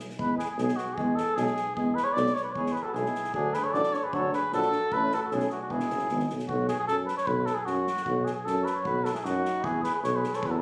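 Balkan brass band folk at 152 BPM in a straight 2/4, virtuosic and wild, moving from E mixolydian to B mixolydian at 6.5 s, with a veiled, cup-muted cornet carrying the melody up front over a warm tuba bass, two euphoniums (one dark and close-miked, one clear with a vintage tint) holding background accompaniment until 6.3 s, a dark, smooth-topped trumpet adding a second line from 2.6 to 6.3 s and again from 8.8 s, and an acoustic drum kit with punchy kick and medium-tuned snare played with bundle sticks, all in a moderate small-room reverb captured on a phone in this cut from a longer piece.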